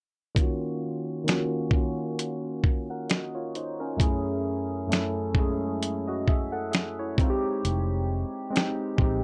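Melancholic and reflective, this lo-fi hip hop fragment sets soft, mellow electric-piano-like synth keys, chorused and filter-swept through Ebm7, Gbm7 and Fm7, against a dusty, compressed sampler-style drum kit of thumpy kick, medium-tuned snare and hi-hat carrying 12-bit grit over a swung groove, until a dark, round, foam-muted fingered electric bass joins at 7.6 seconds, all captured in a dry, gritty hardware recording.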